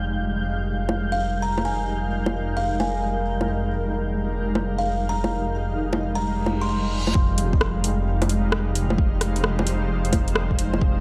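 Set in a light, digital ambience, this rainy, nocturnal future garage excerpt moves at 131 BPM with a swung 4/4 feel in F minor, opening on an Fm9 chord from a cloudy, blurred granular pad and a deep, rumbling detuned saw bass, both pumping to the sidechain, while a faint flickering grainy texture hovers in the background. A tape-warm deep house kit of bongos, metallic hi-hats and rim clicks sits up front as a woody, buzzing kalimba traces a mellow melody through digital delay. A reverse cymbal at 6.5 seconds ushers in a deep electronic kick drum at 7.2 seconds for the closing section.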